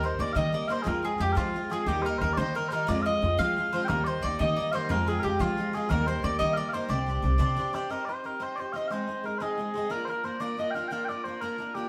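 Sweet, mellow small bagpipes lead this driving, wild Celtic jig in 6/8 at 120 BPM from the very first beat, singing up front with vibrato over a shimmering, octave-doubled picked twelve-string acoustic guitar, a brilliant, round mandolin second line on doubled strings and a dark, woody pizzicato upright bass; mandolin and bass drop out around 7.5 s, leaving pipes and guitar to carry the closing passage over Cm, Ab and Bb, all captured as a band playing together in one room with a wet studio reverb in this short fragment of a longer piece.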